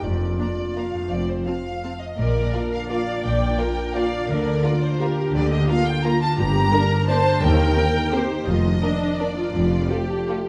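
Elegant and festive, this orchestral ballroom waltz in Bb major moves at 170 BPM in 3/4 with uneven, rubato beats, its violin section carrying the focused, vibrato-rich melody while a second, distant violin line and lush violas fill the middle. Ringing fingerpicked harp arpeggios run throughout over bowed cellos and double basses, a present clarinet sounds briefly at the opening, a tight, mellow French horn section holds sustained chords in the background from 2.5 seconds, and soft, round timpani touch in very quietly at 7.4 seconds. The short cut, taken from a longer piece, has a dark production and the moderate reverb of a scoring stage.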